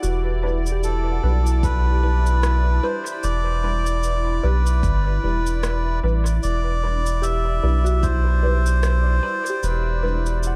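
Ambient dub at 75 BPM in E minor, hazy and deep, with a swung 16th-note feel resting on a single Em7 chord throughout this 10.6-second fragment of a longer piece. A round, soft sub bass sits up front beneath a moody, detuned sawtooth pad with slow attack and chorus, while a pure FM synth bell plays gentle arpeggios through chorus and analog delay. Tape-warm electronic cabasa and rim click carry dub echo, a muted, nasal filtered chord stab with phaser and cassette-tape colour enters at 0.4 s, a reedy, breathy melodica carries the melody from 0.8 s, and a layered electronic kick drum thumps in the background from 1.6 s in an echo-heavy, dry-roomed mix.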